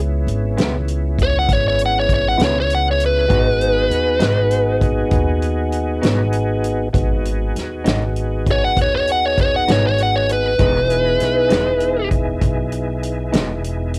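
A smoky, soulful slow blues with the hazy, lo-fi intimacy of a home cassette recording and a light reverb around it, cut from a longer piece. A tonewheel organ holds sustained chords through a slow rotary speaker and chorus vibrato, moving from C#m7 to G#m7 and then to Emaj7 near the end. Beneath it, a woody, thumpy upright bass is plucked with a touch of tube saturation, while a natural country drum kit in a small room sets a straight 12/8 feel with hi-hat, a punchy kick and a medium-tuned snare. An electric guitar through a small old amp adds slightly broken-up, picked accompaniment colored by harmonic tremolo. Up front, a smooth overdriven lead guitar sings the melody from 1.2 to 12.1 seconds, its picked lines glowing with a warm, soulful bite.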